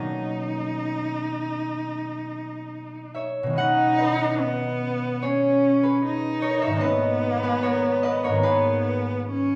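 A warm, bowed cello sings an expressive, pastoral melody with vibrato and portamento over a bright, ringing concert harp that is fingerpicked from the very start of this short, dreamy cut from a longer impressionist classical duo. The pair moves in B major at a rubato 64-78 BPM in 4/4, drifting through lush chords from Bmaj9 to B69 and then G#madd9 at 6.8 seconds. Both instruments sit up front in a resonant recital hall whose wet reverb lends the music a soft, floating glow.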